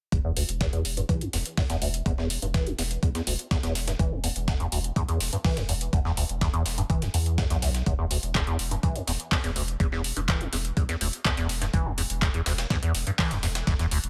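A squelchy, resonant acid bass riff opens this raw, hypnotic acid house excerpt at 124 BPM in E minor. It is joined from the start by a deep, saturated triangle sub bass and a thumpy, tape-warm electronic kick sitting up front. The square-wave acid line carries a filter sweep throughout, coloured by phaser, subtle chorus and digital delay, while both basslines pump against the sidechain. A gritty, compressed sampler-style kit adds overdriven hi-hat and a medium-tuned snare, with both filtered to thin out their lows. At 0.4 s an analog electro drum machine enters with handclaps and metallic hats, and the whole straight 4/4 groove stays dry and close with little reverb.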